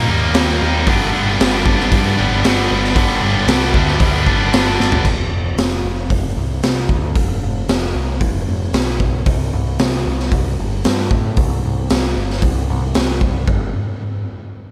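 A bright, double-tracked high-gain guitar riff leads this restless, anthemic quiet-loud alternative rock excerpt at 114 BPM in a straight 4/4, its distorted, picked tone up front over Eb and G until it stops at 5.1 seconds. A raw garage drum kit, gritty and saturated with a high-tuned snare, boomy kick and a pumping stone-room sound, plays a fill at 4.8 seconds, then carries on with the growling, overdriven picked bass through F5 and C5. The bass runs until 13.7 seconds, all in a small room with light reverb.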